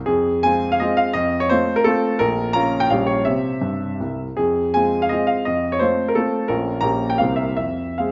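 Capricious and wistful, this brief fragment of a longer romantic-era classical piece is a triple-time dance in F minor with dotted rhythms. It moves at a flexible 137-186 BPM with plenty of rubato. A clear baby grand piano plays solo and sits present and up front, spanning Bb1 to Bb5 as the harmony sways between F minor and F major, touches Bb minor and C, and closes through a diminished chord and C7 back to F minor at 7.6 seconds. A wet recital hall reverb with a 1.7-second decay surrounds the playing, and the sound is softened at the top, reaching nothing above 7.5 kHz.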